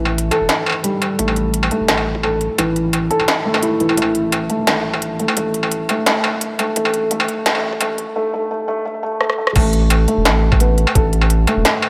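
Bathed in a lush digital hall, this tense, dark excerpt of half-time drum and bass at 172 BPM sets a felt-muted upright piano's mellow, intimate arpeggios, up front with audible action noise, 12-bit sampler grit, low-pass filtering and tape echo, over a deep, thick, saturated sine sub bass and a close industrial kit of clanging snare, crisp hats, rim clicks, crashes and struck metal, while a compressed, pitched-down electronic kick thumps in the background from 1.2 s, and a drum fill at 9.2 s ends the build-up and leads into the drop at 9.6 s.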